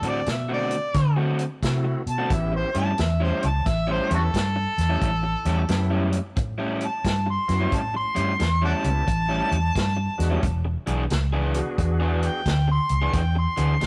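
A gritty, laid-back electric blues shuffle at 89 BPM in A mixolydian opens with an up-front, overdriven harmonica solo full of tongue slaps, scooped notes and light vibrato over crunchy picked guitar riffs, a round, foam-muted bass and a distant, roomy soul drum kit with a tight kick, joined at 1.6 seconds by a reedy tonewheel organ with key click and slow rotary swirl as the chords move from D7 to A7 and E7, all in a rough rehearsal-room sound with light reverb.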